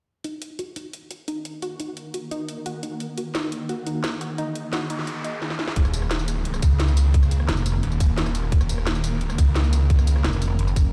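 Dark technical drum and bass at 174 BPM in Eb minor, this excerpt from a longer piece opens with a warbly, dusty pluck arpeggio and a drum kit of cracking snare, metallic hats, rim click and tambourine, joined at 1.5 seconds by a swarming, granular drone, with both synths under filter sweeps and a noise sweep and drum fill leading in. At 5.8 seconds the drop hits with a tight, up-front electronic kick and a snarling, growling distorted saw bass, while a pulsing, saturated wobble bass cuts in briefly. The dark, mechanical sound is set in light reverb and digital ambience, heard through a big sound system in a bare stone room.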